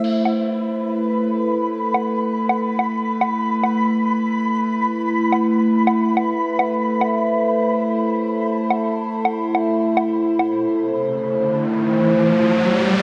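Meditative and brooding, this deep dubstep excerpt sets an up-front, resonant drone of moving overtones holding an Amadd9 chord with chorus against overdriven, filtered electronic crash cymbal and woodblock until 10.5 seconds and a flickering, grainy granular texture, all bathed in a lush hall reverb and bright 1980s-style digital sheen before an electronic riser enters at 11.1 seconds.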